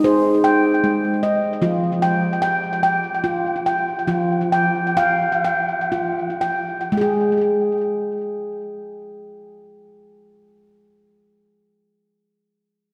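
Dreamy and gentle, this meditative world piece drifts in a slow, straight 6/8 at about 38 to 51 beats per minute counted in dotted quarters, tuned to A4 = 438 Hz. A breathy, round clay ocarina opens with a brief, expressive tongued phrase on Eb4 in a straight tone, and falls silent at 1.2 seconds. The handpan sits up front throughout, playing ringing stainless-steel arpeggios with the fingertips across a span from F3 to G5. The harmony moves from Ab to Fsus2 at 1.6 seconds, where the tempo begins slowing down, and the chords give way at 6.9 seconds as the music shifts into a new section. Both instruments carry delay, and a wet church reverb with a 2.7-second decay lends the cut-from-a-longer-piece excerpt a spacious, hovering calm.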